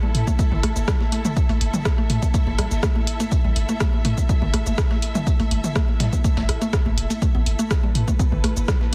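This cool, sparse minimal techno excerpt at 123 BPM opens on a woody, nasal FM mallet pluck riff in the background, carrying chorus, dub echo and sidechain pumping, joined by overdriven, echoing electronic congas and toms and a distant bowed string section with vibrato and portamento; a deep sine sub bass with a pitch-drop attack and tube saturation then enters at 0.1 seconds, alongside a gritty, very quiet sampler-style soul kit of hi-hat, fat snare and tambourine and an analog drum machine of cabasa, hi-hat and rim click with soft clipping on its snare, while a punchy electronic kick sits up front from 0.3 seconds in a dense, heavily limited modern master.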